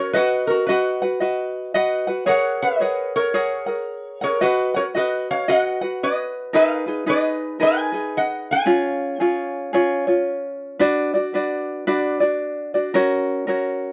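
Sunny and languid, this Hawaiian excerpt moves at 112 BPM in a swung 4/4 in F# major, tuned slightly sharp of standard pitch. Up front, a metal-body resonator slide guitar carries the melody with a nasal, metallic voice picked with fingerpicks, stopping at 9.5 seconds. A bright, light tenor ukulele fingerpicks the accompaniment through to 13.9 seconds, closing alone over chords that pass from B through G#madd9 and Bm before settling on F#, all caught by close, detailed microphones in a touch of reverb.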